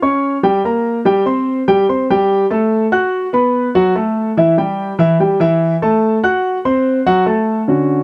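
Set in a straight 4/4 at 145 BPM, this short jazz fragment moves with an easy, even pulse that feels sunny and sophisticated. A grand piano plays alone throughout the 8 seconds, ranging from D3 up to F#6 and tuned slightly low, with A4 at 439 Hz. Its tone is warm and natural, with long sustain that lets each chord ring into the next. The harmony drifts through colourful voicings, from Gdim and Gsus24 to F#madd11/A, B5, Emadd11 and finally F#dim, giving the passage a polished character. The instrument sits up front in a dry, close studio sound with a 1970s flavour, and very little reverb, so every note arrives clear and intimate, as if lifted from a longer piece.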